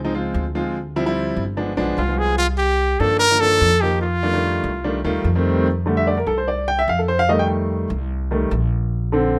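A punchy, forceful, close-miked trumpet carries the jazz melody from 2.0 to 5.2 seconds in this danceable, sophisticated Afro-Cuban jazz excerpt at 147 BPM in 4/4, with plate reverb on its lead line. Underneath, an intimate baby grand piano with audible action noise and long sustain comps through rich extended chords, while a woody, thumpy upright bass plucks gut strings up front. At 5.7 seconds the music settles into F major and the piano takes a solo, all heard in a small room with a rough, home-demo quality.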